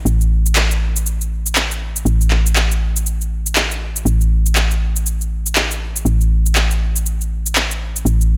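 A digital ambience surrounds this spiritual, driving afro house cut at 120 BPM in 4/4 with a 60% swing on the sixteenths, where a soft, round FM bass with a fast, decaying attack sits up front in the low register around A1 beside an electronic shaker and handclaps, both running through essentially the whole 8.4-second excerpt.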